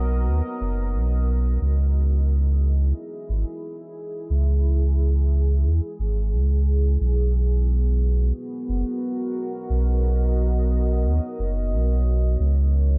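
A deep sub bass and a dark ambient pad open this spacious ambient dub cut together at 89 BPM, moving slowly between Bmaj7 and C#m, with the chord change returning when the passage repeats at 7.0 seconds. The round, sine-like bass sits up front with a fast attack and mellow sustain. Behind it the quieter pad is moody and full-bodied, built from detuned sawtooth unison with a sub octave, a slow attack, a long release, chorus and its own reverb, while the overall sound stays fairly dry.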